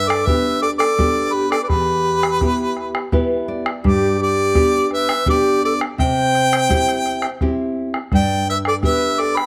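Close, detailed microphones and light reverb frame this short cut from a longer Andean folk piece, wistful and earthy in a straight 3/4. A clear harmonica with light vibrato carries the melody in a roomy, classical style, while a breathy, mellow large quena with a soft attack plays a second line beneath it. A fingerpicked nylon-string guitar sits up front, moving through G, Em and C with a fill at 2.8 seconds, and a round, vintage-toned, band-limited bombo joins at 0.1 seconds to ground the ensemble.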